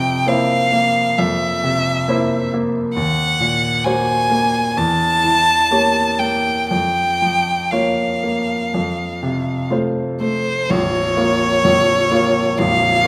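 Rubato in 4/4, this melancholic, solemn romantic classical duo, cut from a longer piece, sets a single player's focused, close violin melody with vibrato up front over bright, open baby grand piano accompaniment that reaches deep into the bass, all within a moderate recital hall reverb as the harmony passes through half-diminished and diminished chords before a new section arrives at 10.7 s.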